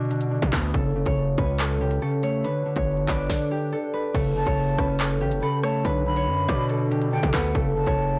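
A distorted, saturated 808-style bass with a heavy, fast-attack punch sits up front in this cold, tense half-time drill excerpt, joined by an electronic drum kit of hard-clipped kick, sharp snare, crisp hats, handclaps, rim clicks and crash, and a dark, compressed electric guitar colored by analog chorus and a low-pass filter. From 0.7 seconds a ringing, fingerpicked concert harp carries the melody through tape echo, and at 4.4 seconds a breathy jazz flute with unsteady vibrato adds a second line above it. The whole mix sounds blown-out and overdriven, with light reverb and vinyl crackle.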